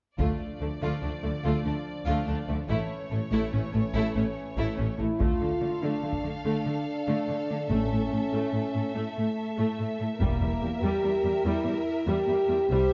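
A 12/8 pulse at 96 BPM drives this dramatic, relentless D minor film-score excerpt, where lush, vibrato-rich violins carry the melody over a second violin line, a soft-edged distant viola accompaniment, mellow roomy French horn chords, a close, smooth cello section and clear double basses, while hard-stick taiko strikes at 0.2, 5.2 and 10.2 seconds and a single round timpani hit in the background heighten the tension through a dark scoring-stage reverb.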